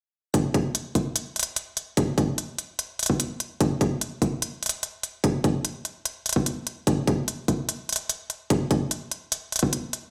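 A half-time 4/4 pulse drives this short cut from a longer heavy wobble dubstep track, carried by an electronic kick drum and an electronic hi-hat that both enter at 0.3 seconds. The mood is chaotic and heavy, even though the arrangement is lean and built from drums alone. The kick is punchy, layered and up front, with a high-pass filter shaping its low end, and it drops out at 9.7 seconds. The hi-hat sits a touch lower in level but stays just as forward, its crisp, layered hits running on until 10.0 seconds. Both parts have a produced, tape-warm character, and the sound comes across as dry yet also as if played through a big sound system in a bare room, with a large studio reverb around it.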